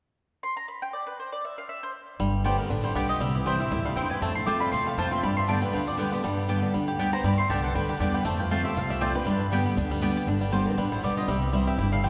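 Driving and joyful, this excerpt from a longer bluegrass piece races along at 238 BPM in 4/4 with a light swing on the eighth notes, set in G mixolydian. A picked mandolin opens the tune alone, carrying the melody over an unaccompanied lead-in before the full band arrives at 2.2 seconds. From there a full-bodied steel-string acoustic guitar sits up front with picked accompaniment, a twangy, percussive banjo plays arpeggios with fingerpicks, and a growly, woody upright bass anchors the low end. A second, brighter mandolin adds stabs in the background, while a clear fiddle with light vibrato traces a biting, nasal second line further back. The harmony moves through G, C and F, returns to G and F, and closes on C, and the whole band rings out in a wet church reverb that gives the recording a spacious hall sound.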